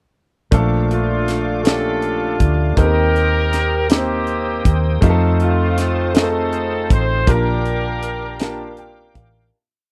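A slow, reverent gospel piece in 6/8 at 53 BPM opens on Bbmaj7 with intimate baby grand piano chords in close voicing, a dark, round hollow-body bass with slides, a tight funk kit with a high-tuned snare, and a reedy, lightly overdriven tonewheel organ pad with key click and fast rotary sitting in the background. From 0.9 seconds a vintage horn section carries a hopeful, motif-based melody of call phrases with light vibrato as the harmony moves through Eb6 and F7 to Bb6. The dry, close 1970s-style studio sound fades out from 7.3 seconds while the piano, with its audible action noise and long sustain, adds a short fill from 8.4 seconds.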